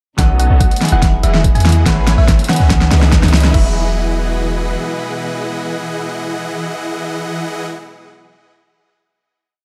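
This future bass piece at 143 BPM in E major moves in a half-time feel, bright and lush over a dark, warm production with light reverb and digital ambience. It opens on a build-up with a drum fill, where an overdriven, knocking electronic kick and an up-front pop kit with a fat snare, hat rolls and crash drive forward. A very quiet riser adds tension toward the end of the build. Huge, detuned supersaw chords in a dotted rhythm pump against the sidechain through a low-pass filter and delay, while a deep, boomy 808-style bass follows the chord rhythm. A round, tine-like FM pluck repeats a gentle, warbling riff melody through chorus and digital delay. It is backed by a clean hollow-body electric guitar with lush chorus, holding rootless chords with syncopated pushes, and by a dark, bowed string section holding an intimate sul tasto pad. The drums drop out at 3.6 seconds as the music settles onto a final Emaj7 chord, and the bass stops at 4.8 seconds while the strings, supersaws, guitar and pluck ring on.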